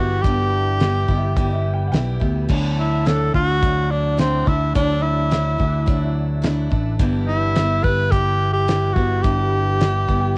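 Folk rock with a heartland rock lean, this hopeful 107 BPM fragment in G major moves at a straight 4/4 as a breathy, whispered tenor saxophone carries the melody up front, its vibrato treated with cassette tape, plate reverb and tape echo. Beneath it, a bright picked acoustic archtop guitar picks out the accompaniment, a punchy amped electric bass anchors the low end, and a damped 70s drum kit with a fat snare, tight kick and rolled-off top adds a dry, cassette-coloured pulse. A very quiet tonewheel organ holds clean chords through a rotary speaker, while a dark, woody upright piano adds a brief boxy second line in the background at 1.1 seconds, giving the home-recorded sound a cozy, intimate feel.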